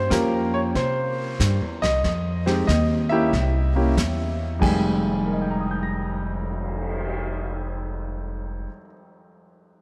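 A concert grand piano carries the melody up front in this moody, smoky jazz piano trio fragment, its tone natural and deep in the bass, spanning from low register to high treble. The upright bass sits close beside it, played pizzicato on steel strings with a woody, warm body. A vintage drum kit on brushes fills in behind, with dark cymbals, a medium-tuned snare, a tight kick, hi-hat, crash and a cymbal swell, all heard through a small, pumping room sound with a rolled-off top. The swung 4/4 feel moves through chords such as Gm7b5, C and F7sus2 before settling on Fm9, and the whole trio is bathed in a long cathedral reverb that makes the space feel vast and echoing. The drums stop at 7.1 seconds, while the bass continues until 8.6 seconds and the piano rings on to 8.9 seconds.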